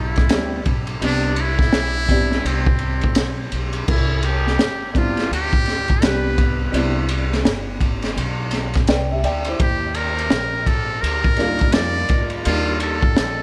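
A buzzy, metal-muted trumpet with a diffuse ambient delay opens this relaxed, smooth jazz-hop piece at 84 BPM with a swung 16th feel, carrying a breathy melody over woody pizzicato upright bass, soon joined by a gritty, saturated breakbeat kit up front with a punchy kick, high-tuned snare and dark cymbals, and by a mellow, boxy grand piano with subtle chorus that plays a fill at 8.5 seconds before the harmony shifts from Cmaj9 to Ebmaj9 at 9.6 seconds, set in a light studio reverb.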